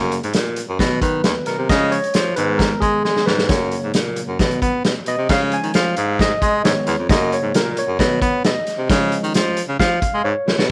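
Uptempo 1960s-style soul at 133 BPM, this uplifting, joyful fragment cycles through F#, B, C# and G#m as a bright, barky tine electric piano, clean through a combo amp, takes the lead from the first second. Underneath, a warm, smooth-topped baritone saxophone carries the bass line up front with pop-style vibrato, while a vintage acoustic kit with a punchy kick, medium-tuned snare and rolled-off top sits forward in a small, pumping room. The drums drop fills at 3.0 and 10.2 seconds, and light reverb rounds out the sound.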